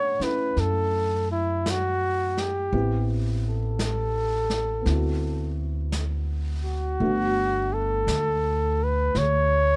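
Swung eighths in a slow 4/4 carry this wistful, smoky jazz ballad excerpt, cut from a longer piece, with a mellow flugelhorn up front singing the melody with vibrato over a dark, intimate baby grand piano whose vintage tone lets its action noise through. A woody, thumpy upright bass on gut strings is plucked close and present, while a brushed drum kit joins at 0.2 s with a smooth, rolled-off snare and hi-hat. The dry, detailed sound keeps every part near, as the harmony moves from a rootless Bm9 through Am7 and D13 to Gmaj9.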